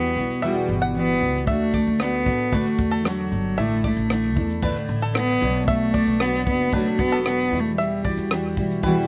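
A straight 4/4 groove at 114 BPM in D major carries this carefree, easy-going acoustic pop excerpt, where an intimate, up-front bowed cello sings a soft-attack sul tasto melody with light vibrato over a full-bodied, double-tracked fingerpicked jumbo guitar with slapback echo, twangy banjo arpeggios, a woody, growly pizzicato upright bass and, from 1.5 s, a dry cocktail kit of punchy kick, rim click and shaker, all captured outdoors with little reverb as the chords move from Emadd9 through D, Asus4 and Bm back to Emadd9.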